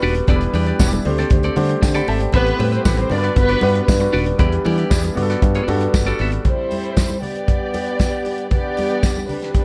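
A straight 4/4 disco groove at 117 BPM drives this glamorous, joyful excerpt in G major, anchored by an up-front soul drum kit with a tight kick, a medium-tuned snare and hi-hat, all rounded off with a rolled-off top. A dark, round fingered electric bass sits just as close, while soft-handed congas enter at 0.3 seconds and a jingly, vintage-sounding tambourine adds a warm, band-limited shimmer. Twangy, compressed clean electric guitar with a phaser and a deep-bodied concert grand piano share the accompaniment over chords such as Em7, D7sus4, Am9 and Gmaj7, both dropping out around 6.4 seconds along with the bass. A mellow French horn section holds sustained chords throughout, and a lush, woody violin section arrives at 2.3 seconds, bowed with vibrato, to carry a second line up front. Once the guitar, piano and bass fall away, the closing passage moves through Am7, G and Em7 with horns, strings, drums and hand percussion, all in a polished studio reverb.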